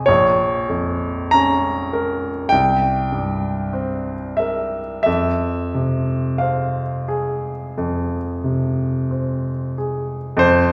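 Played in a free, rubato 4/4, this brief fragment of a romantic classical nocturne for solo piano unfolds with a wistful, yearning mood. A clear, polished baby grand sits up front, ranging from deep bass to the upper treble as its harmony moves from B-flat minor through C5 to F minor. The instrument rings into a wet recital hall reverb with a 1.5 s decay, giving the short passage a resonant, spacious setting.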